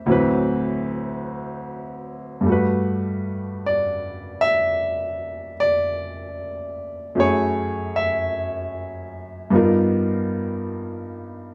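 A clear grand piano plays alone through this intimate, smoky jazz ballad fragment, cut from a longer piece, moving at a slow 51 BPM in 4/4 with a swung eighth-note feel. Its smooth, vintage tone with short sustain sits up front, ranging from low D2 to E5 as the harmony passes through D13, Gmaj9, F#m7 and a G7alt at 9.5 seconds. A wet studio reverb gives the sound of a live room, with the instrument tuned slightly below concert pitch at A4 = 438 Hz.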